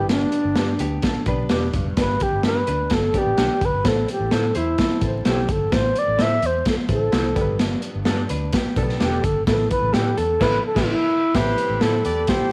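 Vinyl crackle, light reverb and studio ambience frame this passionate, urgent snippet of uptempo 1960s-style soul in A minor at 128 BPM, where a crunchy, saturated breakbeat kit with dark cymbals and a punchy kick sits up front, joined by a round, foam-muted fingered electric bass. A mellow, reedy alto flute with an airy straight tone carries the solo melody over a worn, slightly detuned upright piano, a clean, compressed hollow-body jazz guitar riff and lo-fi, slightly broken-up electric guitar stabs bathed in lush chorus, all sitting in the background. After a band accent at 10.4 seconds, a clear, punchy horn section with vibrato enters at 11.3 seconds on a second line as the harmony moves from G through Asus2 to A minor.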